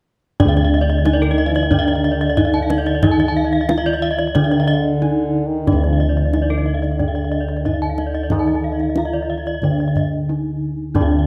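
From 0.4 s, this brilliant Balinese gamelan passage rings out at 91 BPM in a moderate recital hall, with a dry, full bronze metallophone melody over a softer metallophone accompaniment in the background, round, up-front bossed gongs in the bass, two horn-mallet metallophone arpeggio lines (one bright and airy, the other vintage and band-limited), all the metallophones shimmering with the beating of paired tuning, deep kendang struck with soft hands behind them, and a mellow, distant French horn adding a second line from 1.1 s to 9.5 s.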